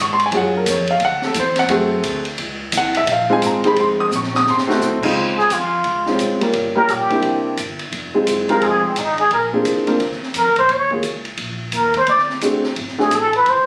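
A dark, mellow baby grand piano opens this relaxed, playful small-group swing and bop excerpt, its chords intimate and up front, with audible action noise and a short sustain. An upright bass sits low beneath it, woody and thumpy with the gut-string character of pizzicato playing. An open jazz drum kit joins almost at once, with dark cymbals, a high-tuned snare and a boomy kick, its rolled-off top keeping it soft around the edges. A drum fill at 4.1 seconds sets up the trumpet with plunger mute, which takes the melody at 5.4 seconds with a breathy, whispered wah-wah tone and a soft attack. The trumpet sounds both up front and distant, set in a roomy space, while the changes move through rich extended harmonies under a light swing. A moderate studio reverb lends the whole small band a close, phone-in-the-room feel.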